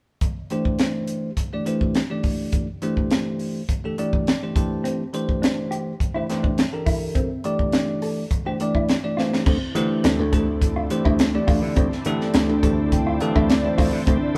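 Captured live in one room with light reverb, this slick, intense electric jazz fusion excerpt at 104 BPM opens with a crisp drum kit, its high-tuned snare and punchy kick up front, joined by a bell-like tine electric piano through a phaser; a dark, compressed electric guitar adds stabs from 4.8 seconds, and at 9.5 seconds, over a Dm9 chord, a dry, foam-muted thumbed slap bass enters, soon followed by a soft, detuned organ-like pad with ensemble chorus.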